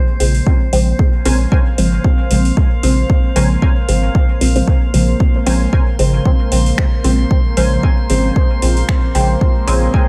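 Meditative and hypnotic, this dub techno excerpt moves at 114 BPM in 4/4 with a light swing on the sixteenths, resting on a single Bbm9 chord in Bb minor. An up-front electronic kick, deep and tape-warm with a small-room character, anchors the groove alongside a round, soft sub bass that sits just as far forward, its tube saturation and sidechain pumping giving each note a gentle breath. A dry, overdriven vintage rhythm box adds finger snaps and metallic hi-hats, while a muted, detuned sawtooth chord stab with a moving notch and phaser carries the dub echo that defines the style. Around them a moody, detuned pad holds sustained chords with chorus and built-in reverb, and a glassy texture of drifting overtones floats higher up with a calm, slow-attack shimmer. From about 1.3 seconds a crisp, bright wavetable chord stab joins in the background, its echoes pumping along with the other sidechained parts to keep the whole hypnotic pulse rolling.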